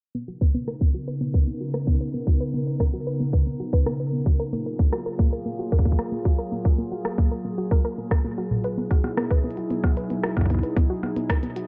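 A tight, overdriven electronic kick sits up front in a straight 4/4 IDM groove, joined at 0.7 seconds by a glitchy kit of clicky hi-hats and rim clicks run through overdrive and tape echo. From 0.1 seconds a soft, round pluck spins detuned arpeggios with chorus and delay under a filter sweep, while a warbling, nostalgic pad with sidechain pumping holds dark sustained chords moving from Bmaj9 to F#maj9 to Emaj9. Light reverb and a low-pass filter round out this playful, intricate fragment of a longer piece.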